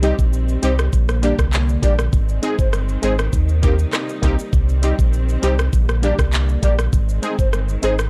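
Dancehall at 100 BPM in C minor, this short cut from a longer piece has a hypnotic, tough mood, built on a chord cycle moving from Cm through Gm/Bb, Ab and Eb6 before returning. An electronic afro-pop drum kit sits up front with a knocking kick, metallic hi-hats, handclaps, rim clicks and shaker, its sound re-recorded in a large room, while a deep, full sine sub bass with an added octave holds the low end just as prominently. Punchy, brassy sawtooth stabs, detuned and bright with a filter sweep, chorus and sidechain pumping, drive the accompaniment. Beneath them a lush studio string section sustains smooth bowed chords, also pumping with the sidechain. Set in the background, a hollow, woody clarinet-like lead carries the melody with soft attack, vibrato, chorus and tape echo, and all parts play together from start to finish in a dry, gritty hardware recording.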